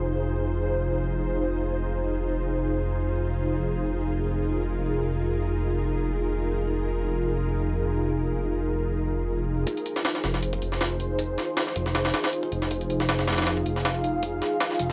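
Drum and bass in the jungle style at 158 BPM in F minor, this atmospheric, nostalgic excerpt opens with an ethereal, airy pad sustaining an Fm7 chord over a deep, rumbling detuned saw bass with tube saturation, a barely audible downlifter in the first 0.6 seconds, and a gritty, pitched-up sampler-style jungle kit with a thumpy kick arriving at 9.7 seconds to drive a build-up, all on a dry hardware recording with vinyl crackle.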